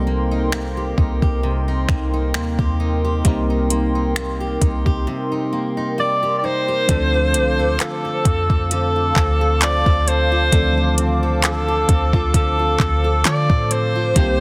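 Late-night and moody, this slow contemporary R&B excerpt at 66 BPM in D phrygian, with a gentle sixteenth-note swing, layers a glassy, bell-like FM electric piano with chorus, an airy, hollow pad and a full-bodied fingerpicked steel-string acoustic guitar arpeggiating through tape echo over a deep, boomy 808-style bass and an up-front electronic drum kit of finger snaps, handclaps, metallic hi-hats, kick drum and a snare with soft clipping that enters at 0.5 s, before a vibrato-laden alto saxophone with tape echo takes the melody from 6.0 s as the harmony moves from Cm7 to Dm7 at 6.9 s, set in light reverb within a dense, heavily limited modern master.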